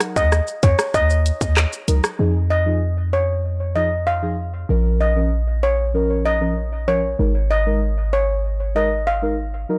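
A dry, gritty recording with digital ambience carries this hypnotic, tough dancehall fragment at 96 BPM, where a tight electronic drum kit of kick, hi-hat, handclaps, rim click and shaker drives only the opening 2.2 seconds, while a deep, boomy 808-style bass with a noisy edge, dark detuned chord stabs treated with chorus and phaser, and a shimmering metallic steel pan lead through analog delay carry the Ebm, Fm7, Bbm and Absus2 changes until the cut near 9.8 seconds.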